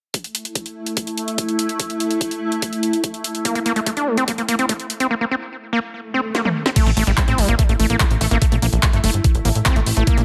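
Up front, an overdriven electronic kick knocks hard at 145 BPM through this intense, psychedelic trance excerpt in A phrygian, joined by a layered drum kit with a woody snare, bright hats, handclaps, toms and crash, while an evolving, detuned wavetable pad holds sustained chords under a filter sweep, phaser and sidechain pumping. A squelchy, gritty acid bass riff enters at 3.5 seconds with distortion and delay, and a background swell and drum fill lead into a new section at 6.8 seconds. There a punchy, funky analog bass plucks low notes and a metallic wobble bass wobbles in the background from 7.2 to 9.0 seconds, all in light reverb.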